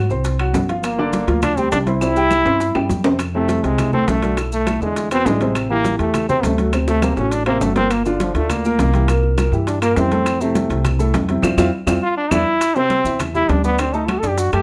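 A moderate studio reverb gives this short cut from a longer Afro-Cuban jazz piece a gentle sense of space, with a sunny and sophisticated mood in a straight four-to-the-bar feel. Up front, a brilliant, forceful trombone with light vibrato and scooped notes enters at 0.8 seconds and takes a punchy, smooth-topped jazz solo from 3.2 seconds onward. Beneath it, a dark, woody upright bass played pizzicato on steel strings sits prominently, while a warm, natural-sounding baby grand piano carries the harmony through moving seventh chords. Ringing, medium-tuned congas, metal-shelled timbales and woody claves stay in the background. Grainy, mellow maracas sound close and dry, and very quiet, round, low-tuned bongos are struck with hard hands. Drum fills punctuate the phrases, and the whole band hits an accent at 11.4 seconds before the harmony turns to a suspended chord near the close.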